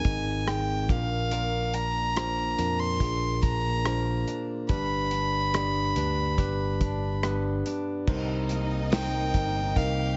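Emotional and melancholic, this pop ballad moves with a straight 4/4 feel and is cut from a longer piece. A solo violin carries the melody up front with a soft attack, airy bow and pure, floating tone, over a bell-like tine electric piano whose clean, direct accompaniment runs through the chords Ab, Bb and G. A picked steel-string acoustic guitar adds dark, full-bodied arpeggios in the background, finger squeak audible, while a fretless electric bass with subtle chorus sounds growly and amped near the front. The drum kit, heard in a small room, is smooth with a rolled-off top, a tight kick and medium-tuned snare, plus rim click, hi-hat and crash cymbal. At 8.1 seconds the harmony settles on Cm7 and a distant, lush studio violin section enters with expressive vibrato and digital delay, all within a light studio reverb and a gently muted top end.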